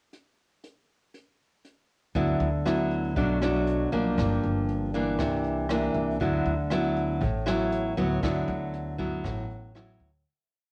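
A straight 4/4 bossa nova groove at 118 BPM opens on a brushed jazz kit alone, its dark, smooth hi-hat, boomy kick and rim click tinted by cassette tape, before nylon-string guitar and upright bass enter at 2.1 seconds. The up-front, fingerpicked guitar, also carrying a cassette tape color, plays classical-style thumb bass beneath syncopated plucked chords through D69, Bm7, Gm7 and C9, while the woody pizzicato bass outlines dotted root-and-fifth lines underneath. In D major with a breezy, sunny mood, this short home cassette recording sits in moderate room reverb with studio ambience and fades out from 8.2 seconds.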